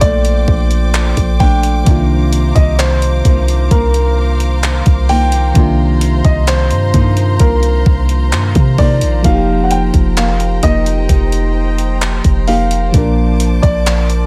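Moody and late-night, this slow contemporary R&B piece sets a concert grand piano melody over a dark FM electric piano, smooth bowed strings with vibrato, fingerpicked nylon-string guitar arpeggios in the background, a deep, boomy 808-style bass and a thumpy, sampler-style 80s drum machine of kick, hi-hat and handclaps with gated reverb, the bass and drums sitting up front in a small room as the chords move from Bbmaj7 through Cm11 and F9sus4 before returning to Bbmaj7 at 12.9 seconds.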